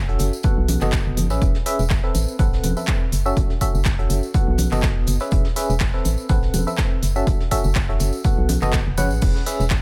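An organ-like FM bass opens this uplifting, euphoric piano house excerpt, its hollow, dark tone pumping against the kick, and a barking FM electric piano riff joins at 0.1 seconds with a biting, percussive attack, a noise layer, chorus, tremolo, a low-pass filter and digital delay. Underneath, a soft brush drum kit sits in the background with a smooth, rolled-off hi-hat and a medium-tuned snare in a small room, while a layered house drum kit adds crash cymbal, handclaps and crisp hats from 0.2 seconds. Ringing tambourine and congas, recorded in a small room, fill out the percussion. A punchy analog kick drum lands up front at 0.4 seconds, re-recorded in a large room, and drives the swung 4/4 groove. The harmony cycles through B7, E6, Amadd9 and F#m7, giving the riff a bright, lifting pull.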